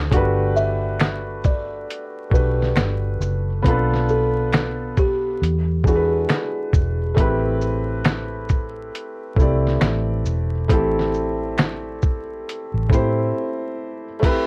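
Melancholic and nostalgic, this lo-fi hip hop excerpt drifts at 68 BPM with a swung feel in A dorian, as a soft, felt-muted upright piano with audible action noise and a dark, round, foam-muted electric bass carrying transformer saturation sit up front alongside a compressed, pitched-down sampler drum kit with a thumpy kick, fat snare and 12-bit grit. A buzzing, woody kalimba plays the low-passed melody from 0.6 to 6.5 seconds, while a very quiet, close finger snap adds human texture and the chords move from Gmaj7 through Bm7b5 and E7 to Am7. Light reverb and worn cassette tape with vinyl crackle and warbly pitch drift color the sound, and the bass stops at 13.3 seconds for a short break.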